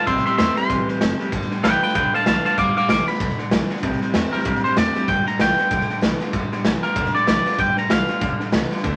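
Rowdy and rollicking, this swung rockabilly excerpt in G mixolydian charges along at 192 BPM over C7 and G7 changes. A raw garage drum kit with a punchy kick, medium-tuned snare and a gritty, saturated, rolled-off sound sits up front, while a woody, thumpy pizzicato upright bass on gut strings holds the low end in the background from 0.1 s. A bright, clean, twangy electric guitar carries the melody up front until 8.5 s, supported by a slightly broken-up, lo-fi, compressed electric guitar through a small old amp playing a low riff and a full-bodied dreadnought acoustic guitar with audible finger squeak, all set in moderate studio ambience under a layer of vinyl crackle.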